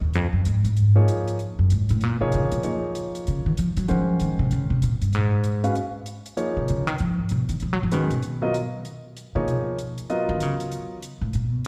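A swung 4/4 pulse at 193 BPM carries this open, hypnotic modal jazz excerpt, where a woody, thumpy pizzicato upright bass sits up front and solos throughout, a dry acoustic hi-hat ticks quietly beneath it from 0.1 seconds, and a natural-sounding baby grand piano with short sustain and a slapback echo comps from 1.0 to 11.0 seconds over Db, Db9 and Gb chords settling into Db mixolydian at 5.1 seconds, all heard as a live gig through the venue's PA with light recital hall reverb.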